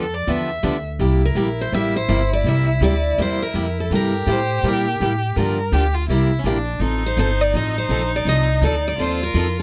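Jazz manouche (acoustic string swing) at 166 BPM in C mixolydian, playful and swinging, opens with a clear, focused bowed fiddle taking a brief solo over a bright dreadnought guitar accompaniment and a woody, thumpy pizzicato upright bass on gut strings, before a second steel-string guitar with fresh strings and audible finger squeak picks out the melody from 1.3 s as the fiddle carries a smooth second line, the whole captured in a dry, close, detailed recording cut from a longer piece.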